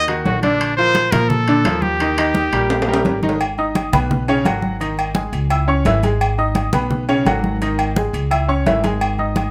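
This driving, passionate salsa excerpt opens with a bright, up-front trumpet singing a short solo phrase with light vibrato and scooped notes over a brilliant, worn baby grand piano whose action noise is audible, a woody, growly pizzicato upright bass, and congas that sound thin-skinned, damped and dry. Ringing metal timbales and agogo bells play alongside the congas, and a drum fill at 2.7 seconds leads into a new section at 3.4 seconds, where the trumpet has dropped out and the piano, bass and percussion carry on through a cycling minor progression. Moderate studio reverb surrounds the band.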